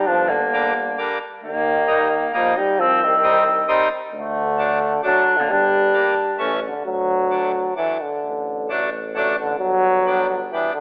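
In a straight 3/4 at 133 BPM, this jolly, festive alpine dance-band snippet in G minor, turning to D major at 6.9 s, puts a vintage-sounding euphonium melody with light vibrato up front over a punchy, roomy clarinet second line that drops out at 6.4 s, a reedy, hollow accordion accompaniment and a mellow, distant tuba bass, bathed in a wet recital-hall reverb and a telephone-like tone.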